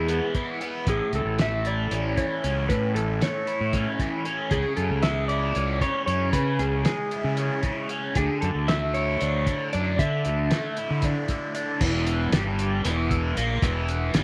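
Opening on a compressed slide guitar melody with slapback echo over a double-tracked, phaser-treated overdriven guitar riff and a round, fuzzy fingered bass, joined at 0.1 seconds by a muffled, cloth-damped drum kit with dark cymbals and a fat snare, this hypnotic, hazy psychedelic rock excerpt drives at 230 BPM in 7/8 through E mixolydian in a small room, the slide falling silent at 11.5 seconds just before the harmony turns to an Edim chord at 11.8 seconds.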